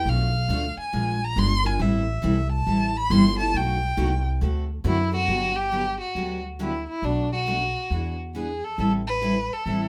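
A small room's moderate reverb surrounds this short cut from a longer piece of lively, playful acoustic string swing in the jazz manouche style, moving at 138 BPM in 4/4 with a swung eighth-note feel. Up front, a single bowed violin with a warm, soft-attacked tone, vibrato and portamento carries the melody, taking an expressive solo from the start until 5.3 s. A bright, picked steel-string acoustic guitar supplies the accompaniment with audible finger squeak. Also up front, a pizzicato upright bass on gut strings gives a woody, dark, thumpy foundation. The harmony opens on chords such as Bm7b5, A#7 and B7b13, then settles into G major at 5.3 s through Gmaj7, Bm7, E7 and Am7, all tuned slightly low, to A4 = 439 Hz.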